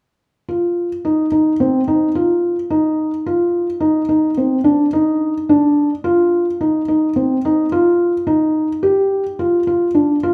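Shimmering and hopeful, this contemporary instrumental excerpt moves at 108 BPM in 5/4 metre with a straight feel. A felt-muted upright piano plays arpeggios from 0.5 to 10.3 seconds, its soft, intimate tone sitting up front and thickened by heavy felt. The piano is bathed in the wet reverb of a recital hall, as if captured in a church or concert hall.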